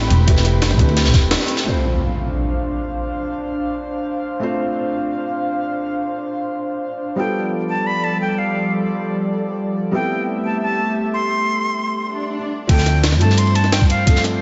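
Liquid drum and bass at 174 BPM in D dorian, soulful and melancholic, opening on a drop where a thumpy pitched-up kick, two gritty breakbeat kits and a woody pizzicato upright bass with tube saturation sit under a felt-muted upright piano and an airy, breathy pad that pumps against the sidechain. The bass drops out at 1.3 seconds and the drums fall away at 1.7 seconds on an impact, leaving the mellow piano and detuned chorused pad to carry chords from Dm7 through G9 and Am9. At 7.2 seconds an expressive jazz flute with vibrato enters, trailed by diffuse ambient delay. A swell leads back into the drop at 12.7 seconds, all set in a dreamy, reverb-soaked mix with a rolled-off top, and the excerpt is cut from a longer piece.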